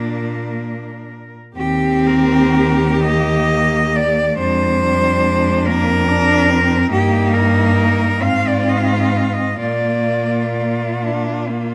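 In a rubato 6/8 lilt at 40-48 BPM, this serene, warm classical excerpt for cello ensemble in Eb major carries a smooth, even cello melody up front until 11.0 s over a second cello line and an accompanying cello, both bowed with soft attacks, expressive vibrato and portamento, while a focused bass cello sits up front beneath them, all four rich in tone and captured by close, detailed microphones in a moderate recital hall reverb.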